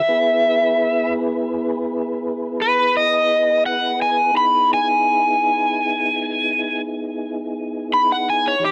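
A smoky, brooding slow blues excerpt in 12/8, where a bright, overdriven electric slide guitar sits up front with a plate-reverbed solo melody over an Emaj7 chord, while a soft, flute-like tonewheel organ holds sustained chords beneath it through a slow rotary speaker and chorus vibrato, all captured with a cassette home-recording character in a moderate studio room.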